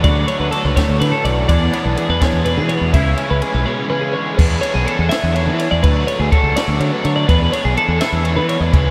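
Soaked in a huge, dreamy ambient reverb, this playful, bright fragment of math rock and midwest emo moves in 6/8 at 83 BPM over Dmaj7 and E7, with a bright, compressed twelve-string electric guitar up front spinning arpeggios through lush chorus and analog delay, a double-tracked overdriven garage guitar riffing with spring reverb, a growling fingered bass sitting overdriven and punchy up front, a dry compact cocktail drum kit with dark cymbals and a high-tuned snare, and a twangy clean electric guitar quietly accompanying in the background until 4.4 s, as a brief break from 3.7 s closes the opening section.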